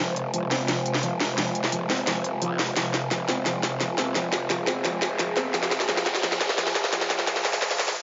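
Futuristic and dark, this short cut of technical drum and bass in F minor at 173 BPM builds up over a growling, wobbling growl bass with chorus and overdrive, a swarming, detuned drone holding sustained chords, a felt-muted upright piano playing soft, mellow arpeggios with audible action noise, tape echo and a filter sweep, an up-front electronic kit with a cracking snare and crisp hats driving a drum fill, and a very quiet riser entering at 4.8 seconds, all set in a lush hall reverb.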